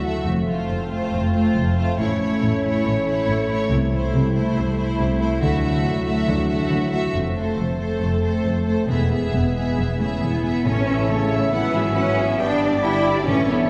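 A cut from a longer heroic adventure film score opens with the full string body at once: a rich, focused violin section carries the melody over a smoother, more distant second violin line, while violas sit in the background and vibrato-laden cellos and double basses hold down an expressive, lush bass. Dark, soft-attacked French horns sustain chords from the start, and a very quiet fingerpicked concert harp rings out arpeggios. In straight 4/4 at 139 BPM, the first 10.7 seconds are a build-up moving through F, A, C6, Dadd9, F and E. At 10.7 seconds the music arrives on A, and a clear trombone section enters in the background with sustained chords, dark distant trumpets add stabs, and round, soft-mallet timpani sound very quietly. The whole orchestra sits in a roomy concert hall with a two-second reverb tail, giving the adventurous, heroic mood a sweeping, lush scale.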